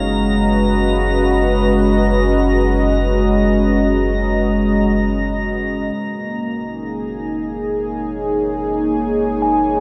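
Peaceful and weightless, this ambient excerpt floats in free time in F# major, set in a vast, echoing cathedral-like space. A smooth, dark analog pad with chorus sustains chords up front over a deep, round sub bass, while a glassy texture of drifting overtones hovers above until 6.0 s, as the harmony moves from G#m/F# to F#add9. Near the close, at 9.4 s, a mellow, clean tine electric piano enters with a brief arpeggio.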